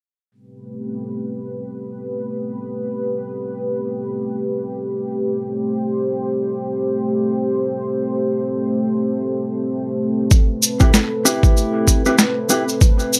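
Swaggering and funky, this glitch hop excerpt in free time opens on a dark, detuned analog pad holding an Am9 chord with chorus and sidechain pumping, before a gritty overdriven kick and cabasa arrive at 10.3 seconds, joined shortly after by clean, fingered electric guitar stabs with dub echo and a gritty overdriven snare, all set in a moderate studio reverb.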